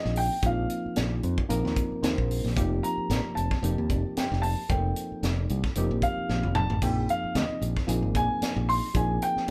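A dark, mellow baby grand piano carries the melody as a solo across this short, funky clip of electric jazz fusion, sitting up front with a 16th-note swing feel over slick sus chords. Beneath it, a gritty, barky reed electric piano with phaser pushes through a combo amp in accompaniment, adding a brief fill around 1.8 seconds, while a bright fingered electric bass and a tight funk kit with a high-tuned snare, kick, hi-hat, splash and toms hold the groove. The drums drop a fill at 6.3 seconds, and the band sounds as if playing live together in one room with moderate reverb.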